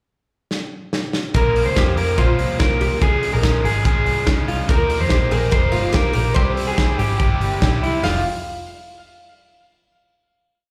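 Wistful and restless, this short, complete piece of jangly indie pop moves in a straight 4/4 and sounds like a live gig heard through a club PA, with light reverb around it. A modern studio drum kit opens alone at 0.5 seconds with a fill, its punchy kick, medium-tuned snare and off-beat open hats setting up a dance-floor indie beat that sits up front. The band arrives at 1.3 seconds: a dark, foam-muted electric bass plays a round, melodic line, a lo-fi guitar through a small old amp rings out a picked arpeggio figure, and a bright, overdriven guitar strums folk-style barre chords, both guitars carrying slapback echo. From 1.4 seconds a plectrum-plucked oud leads with a woody, double-strung melody built from song-like motifs, treated with slapback echo and digital delay. The short bridge passes through Bbm, Db, Ebadd9 and C before the piece settles on a closing F5 chord at 8.0 seconds.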